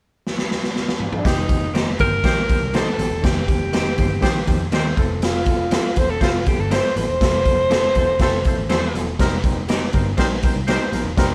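A drum fill on a raw garage kit opens this joyful, danceable slice of uptempo 1960s-style soul at 121 BPM in straight 4/4, with the punchy kick and medium-tuned snare sitting up front in a bright stone room. At 1.2 seconds the saxophone and electric piano enter, and the bass joins at 1.3 seconds over an Eb6/F chord. A vintage muted picked bass, round and foam-muted, anchors the low end, while a barky, reedy electric piano with overdrive and fast tremolo sits in the background. An alto saxophone carries the melody with vibrato and a smooth top in a pop style. From 1.7 seconds a slightly broken-up, lo-fi electric guitar through a small old amp adds compressed stabs, and at 2.0 seconds a tight horn section with light vibrato comes in with a jazz-style second line behind the saxophone. The harmony shifts to Fmaj7 at 5.0 seconds and returns to Eb6/F at 9.2 seconds, all captured as a band playing live in one room with light reverb, cut from a longer piece.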